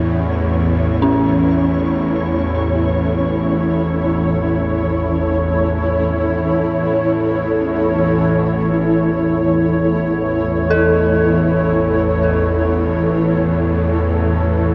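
Floating in free time, this dark ambient drone in A major sits on a single A chord and feels ominous and unsettling. Up front, a tense, string-like bowed drone holds the low register with a bright, detuned sawtooth edge, a noise layer and vibrato. Beside it, a cloudy, full-bodied granular pad sustains blurred, evolving chords, fading in over the first 8.2 seconds. Further back, a dark, inharmonic FM bell traces eerie arpeggios through chorus, phaser, tape echo and shimmer reverb, while a flickering, grainy texture hovers until it drops away at 8.2 seconds, when the music moves into a second section. The huge, wet reverb and dark, warm production surround this 14.7-second fragment of a longer piece.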